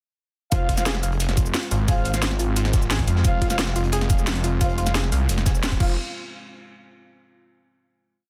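Dark technical drum and bass with a tense, aggressive mood, built on a growling distorted saw bass up front in chopped phrases, a knocking overdriven electronic kick, tight cracking drum-and-bass snares with bright hats, shaker and crash, a very quiet gritty looped breakbeat underneath, a moody analog pad with chorus and sidechain pumping in the background, a warbling lo-fi pluck with 12-bit grit and delay cycling a 6-step arpeggio that drifts against the bar, and sparse echoing stabs from a mellow brass ensemble, all in a dry, dense, heavily limited mix that drops at 0.5 seconds, shares a band accent at 5.6 seconds and ends on a final hit at 6.0 seconds.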